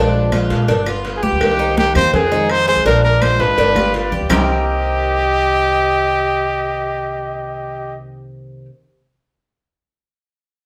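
Warm and danceable, this short cut from a longer piece is Cuban son and guajira in C minor, moving at a brisk 166 BPM in a straight 4/4. A clear, close-miked trumpet carries the melody up front from 1.2 seconds, its pop-style phrasing marked by vibrato and scooped notes, while a reedy jazz flute with an airy, soft attack adds a second line from 3.8 seconds. Underneath, the Cuban tres spins metallic arpeggios on its doubled strings, a boxy plugged-in acoustic guitar picks swing-style accompaniment, and a growly, thumpy upright bass anchors the low end. In the background, high-tuned congas, woody claves, and cowbell with tight bongos drive the groove until about 4.4 seconds, just after a drum fill. The chords cycle through Bb7, G7, Cm7 and Fm7, and the band sounds as if playing live together in one room, bathed in a lush studio reverb.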